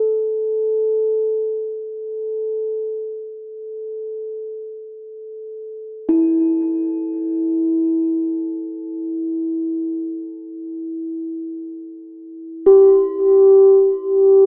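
A bronze singing bowl sounds alone from the very start, ringing with a metallic, mellow tone and a slow beating in its sustained pitch. This is meditative world music in free time, haunting and spacious, tuned to A4 = 436 Hz and cut from a longer piece. Struck with a felt mallet, the bowl moves between E4 and A4, soft and up front, its sound carrying a boxy small-room character and a diffuse ambient delay. The whole recording sits in a wet church reverb yet is filtered through a telephone-like band, so the long decay arrives thin. At 12.7 seconds the opening material returns, and the bowl continues alone until the close at 14.5 seconds.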